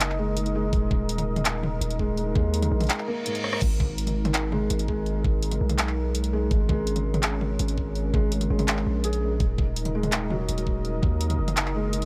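A deep, long 808-style bass sits up front beneath a knocking kick and a bright-hatted drum kit with claps, rim clicks, toms and crash, driving this spacious, heavy half-time drum and bass excerpt at 166 BPM. A soft felt-muted upright piano adds arpeggios with 12-bit grit, tape echo and audible action noise, while a moody detuned pad holds chords with chorus and sidechain pumping, moving from D#m to G#m and back. A brief break around 3 seconds brings a reverse cymbal and a drum fill.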